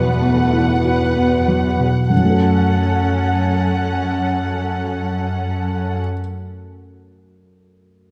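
The rubato pulse slows over the first 2.1 seconds of this sorrowful, bittersweet cinematic film-score excerpt, moving from an Esus2 chord to F# minor. Con sordino violins carry a veiled melody held on F#5 above a second violin line, while muted cellos supply a dark, vibrato-laden bass and a soft, thick-felt upright piano plays an intimate accompaniment. The strings fall away at 6.0 seconds, leaving the mellow piano alone until 8.1 seconds, all set in a moderate scoring-stage reverb.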